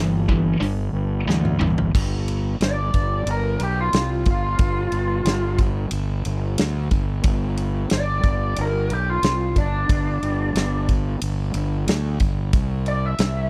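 A dry, close 1970s-style studio sound frames this gritty, driving cut from a longer blues rock power trio and southern rock piece: a bright, double-tracked distorted guitar riff opens over a growly fuzz bass and a punchy, big-room drum kit, a drum fill carries the riff's end at 1.9 seconds, and from 2.6 seconds a lo-fi lead guitar through a small cranked amp, colored by wah and overdrive, takes a solo over a G7 chord with its third omitted before the harmony moves to C.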